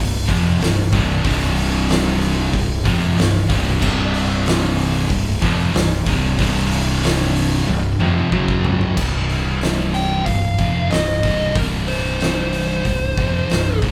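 An oversized, low-tuned acoustic drum kit sits up front with a boomy kick, fat snare and dark cymbals in a pumping big room, driving this hypnotic, ominous stoner and doom metal excerpt at 93 BPM alongside a growly overdriven fingered bass, two thick fuzz guitars and a crunchy, double-tracked overdriven guitar grinding out the riff in the background, until a drum fill at 7.7 seconds leads into a new section where the crunchy guitar drops out at 9.0 seconds and a dark, up-front fuzz lead guitar carries a melody from 9.9 seconds, with the band playing live in one room under moderate studio reverb.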